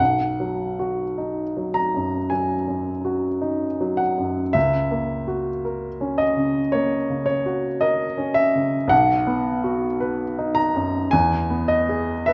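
Flexible rubato carries a slow 4/4 pulse of around 54 BPM, giving this romantic classical nocturne an unhurried, breathing quality. A solo baby grand piano plays throughout, ranging from B1 up to A#5 in B major, with tuning set at A4 = 441 Hz. The harmony rests on B, moves to F#7 over C# at 4.5 seconds, returns home to B, and settles on Emaj7 near 11.1 seconds. The piano has a warm, intimate tone, sitting up front with a natural character, a short sustain and audible action noise that brings the listener close to the instrument. A moderate recital hall reverb gives the sound a gentle sense of space. The mood is nostalgic and serene, and this brief passage is cut from a longer piece.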